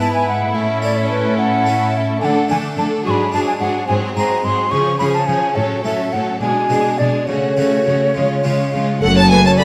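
An airy wooden flute carries the melody at the front of this dramatic, stormy baroque-style concerto movement in 6/8, its close, tongued vibrato tone joined in the melody by a rich, expressive violin section. A second violin line, focused and smooth on top, moves beneath them until 9.0 s. A brilliant, dry harpsichord, close-miked with a full three-string French sound, plucks out the accompaniment alongside a bowed viola section. A dark, woody cello section anchors the bass, and a clear, intense double bass section joins at 9.0 s, sounding distant. The ensemble sits in a wet recital-hall reverb, and the passage is cut from a longer piece, its harmony moving through tense diminished and dominant chords toward a minor-key arrival at 9.0 s.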